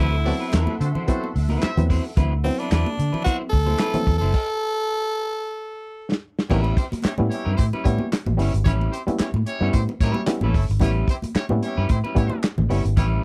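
A swung 111 BPM funk groove, gritty and playful, rides on a dry, muffled soul drum kit with handclaps, a round, foam-muted fingered bass up front, bright, high-tuned congas in the background, stringy muted clav stabs and a clean picked electric guitar, while a raspy, growling tenor saxophone carries the melody over a D13 chord. Clear horns with octave doubling add a brief second line, and a silky string machine with ensemble chorus sustains chords beneath it, until a stop at 4.3 seconds gives way to a drum fill and the horns take the second line over A9 from 6.5 seconds in this close, 1970s-style small-room recording.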